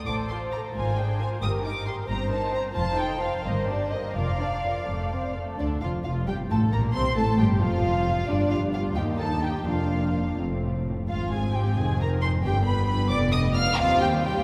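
Restless and dramatic, this fragment of a quick classical-period movement for string orchestra unfolds in a rubato 6/8, with all five sections bowing sul tasto from 0.1 to 14.4 seconds. A dark, intimate violin section carries the melody up front with light vibrato and a smooth top, while a floating, pure second violin line and lush, woody violas fill out the harmony. A soft-attacked cello section set in the background and a distant double bass section anchor the bottom, and a wet cathedral reverb lends the ensemble a church-like depth.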